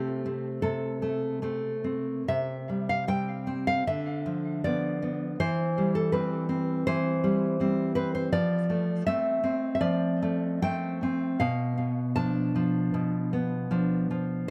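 Intimate and melancholic, this romantic excerpt for solo nylon-string guitar unfolds at 79 BPM in 4/4 with rubato, its uneven beats carrying fingerpicked lines from B2 to A5 that sound full-bodied and fresh-stringed, with audible finger squeak and a touch of tape echo, captured up front by close, detailed microphones in light reverb as the harmony moves from Am/C through C/E at 5.4 seconds and F6 at 8.3 seconds to Bm7b5 at 11.4 seconds.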